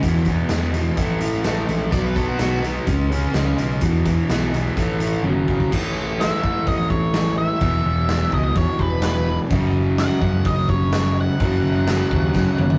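Driving and confident, this classic rock passage, cut from a longer piece, sets two overdriven riff guitars, one crunchy and held in the background and the other raw and garage-toned, over a round, dark picked electric bass and a gritty, up-front acoustic drum kit with a punchy kick and fills. A smooth lead guitar adds a brief second line at 1.9 s, and an octave-fuzz lead carries the melody from 6.2 s, all inside a rough rehearsal-room sound marked by tube saturation and vinyl crackle.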